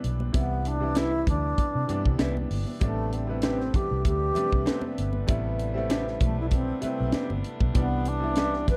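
A dark, dry production frames this short, romantic 1970s-style soul cut at 97 BPM with a light sixteenth-note swing, where a tight funk kit with a high-tuned snare and a round, foam-muted electric bass drive beneath an intimate, boxy grand piano, very quiet ringing congas join at 0.2 seconds, an airy, hollow alto flute carries the melody up front from 0.4 seconds, a slightly broken-up, lo-fi guitar riff sits in the background, and a distant, nasal muted French horn section adds sustained chords from 2.8 seconds as the harmony moves from Cmaj9 to Am11 and back.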